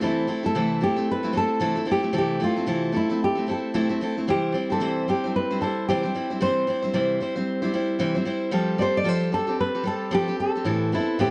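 Sunny and easy-going, this short pop excerpt moves at 113 BPM in 4/4 with a light 16th-note swing, set in C major. A fingerpicked nylon-string guitar carries the melody from start to finish, its fresh strings giving a deep classical tone, touched by tape echo. Beneath it, a picked steel-string dreadnought supplies the accompaniment, dark and full-bodied, with both guitars sitting up front. The harmony moves from Am/C to C, then shifts at 8.5 seconds into a new section on Fadd9 before settling on Amadd9. Light reverb frames a dark, warm production, and the passage is cut from a longer piece.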